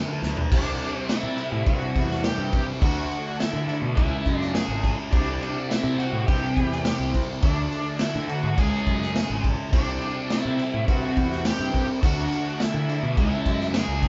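Psychedelic rock with a hazy, trippy mood, this is a short cut from a longer piece in straight 4/4. A thick, bright fuzz guitar, double-tracked with distortion and phaser, drives the picked riff up front. It rides over a dark, round fingered bass with overdrive, moving through a cycle of D, C and C#m. The vintage acoustic kit opens with a drum fill at 0.2 seconds and then sits up front with a punchy kick, a medium-tuned snare, toms and dark crash cymbals in a pumping small room with a rolled-off top. At 0.5 seconds a dusky octave-fuzz lead guitar enters with a picked, distorted melody in a narrow range. Underneath, a very quiet, mellow tonewheel organ holds soft, flute-like sustained chords with key click, third harmonic percussion and a rotary speaker, while the whole band plays live in one room with a moderate large studio reverb and a dull, capped top end.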